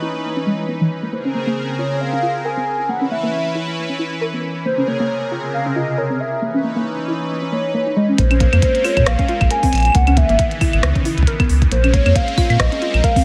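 A smooth, detuned sawtooth pad with chorus and a soft, round arpeggiated pluck moving through a filter sweep open this cerebral, melancholic IDM excerpt in Bb minor at 136 BPM with a light 16th-note swing; a warbling, nostalgic vintage lead with vibrato, cassette-tape colour and digital delay carries the melody from 1.1 seconds over shifting Dbm9 and Bbm9 chords; and at 8.2 seconds an up-front sine sub bass arrives alongside a deep electronic kick and a glitchy kit of claves, clicky hi-hats and rim clicks in small-room ambience, the whole piece sitting in light digital reverb.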